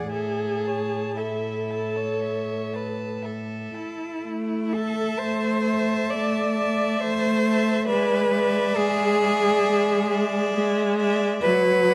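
Serene and lyrical, this slow, rubato classical movement for string quartet at 56-70 BPM shifts from A major to A minor at 4.2 s, with a distant, smooth first violin carrying the melody above a second violin's warm, vibrato-laden line, while an up-front, rich viola shapes the accompaniment with expressive portamento and a close, clear cello anchors the bass, each part a single bowed player set in a moderate scoring-stage reverb.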